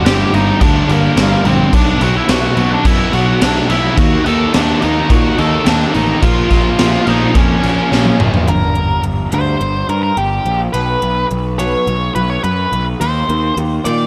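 A raw, saturated quiet-loud alternative rock recording sits in light reverb and studio ambience, and this dark, cathartic fragment of a longer piece moves in a straight 4/4. For its first 8.5 seconds, a gritty garage drum kit sits up front in a pumping stone room, with a high-tuned snare, punchy kick, crash cymbal and toms, and it closes the section with a fill at 7.9 seconds. Behind it, two double-tracked riff guitars churn in the background, one thick and murky with fuzz, the other bright and compressed, over a punchy, overdriven fuzz bass that holds the low end up front throughout. An octave-fuzz lead guitar carries the melody from start to finish, its shadowy tone given a slapback echo. At 8.5 seconds the drums and riff guitars stop, the feel drops to half time, and a full-bodied steel-string acoustic guitar takes over with picked arpeggios touched by slapback and tape echo, moving from Gm through B5 to Eb5 beneath the lead and bass.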